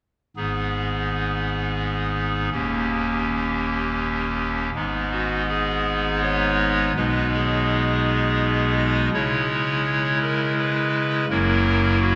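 A solo pipe organ opens at 0.4 seconds, voiced on a clarinet reed stop with a hollow, up-front tone, a touch of chiff at the start of each note and a tremulant. This is a solemn, grave chorale-style classical piece in triple metre, played with a free, rubato feel. The single organ part spans a deep low register up into the middle of the keyboard, its baroque voicing giving the lines a clear, reedy character. After an opening phrase, a second section begins at 4.8 seconds, moving through darker minor harmonies before settling on a dominant-seventh chord. A wet church reverb with a long decay surrounds the organ, and the passage breaks off at 12.2 seconds as a fragment of a longer work.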